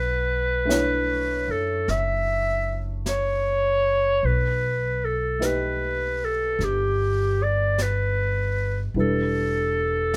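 A light reverb gives this smoky, melancholic slow-swing jazz fragment in B minor, at 51 BPM, an intimate studio feel. A bright, forceful clarinet with light vibrato carries the melody up front, over a dark upright piano with audible action noise and long sustain, and a thumpy pizzicato upright bass on gut strings, moving through Bm11, Baug7 and Em7. A natural-sounding brush drum kit with a high-tuned snare slips in at 0.7 seconds.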